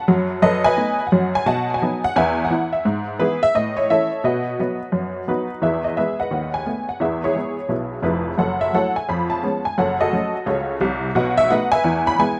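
Swung eighth notes in a brisk 4/4 pulse drive this exuberant stride piano fragment, cut from a longer jazz performance. A lone honky-tonk upright piano carries the whole piece, its detuned, jangly tone sitting up front with short, clipped sustain and a vintage character. The player covers a broad span of the keyboard, from deep bass notes to bright upper-register figures, while a touch of tape echo trails the attack. The opening phrase moves through B7 and E before a second passage starting at 5.6 seconds works through F#m7, C#7 and B7 to settle back on E by 11.9 seconds. A moderate studio reverb and a rough home-demo mix give the swinging performance a loose, informal feel.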